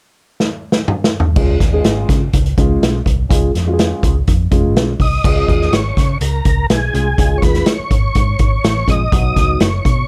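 A straight 4/4 groove at 124 BPM kicks off this joyful, uptempo 1960s-style soul excerpt in Db mixolydian, with an up-front vintage drum kit opening on a fill at 0.4 seconds: punchy kick, dark cymbals, a medium-tuned snare and toms, all in a pumping small room. At 1.4 seconds a dark, round, foam-muted picked electric bass and a gritty, overdriven tine electric piano with phaser settle onto a Db chord, the piano sounding through a combo amp. From 5.0 seconds a smooth, clean tonewheel organ carries the melody with chorus vibrato and slow rotary speaker, before the harmony shifts to Cb near the end, all in a dry sound with little reverb.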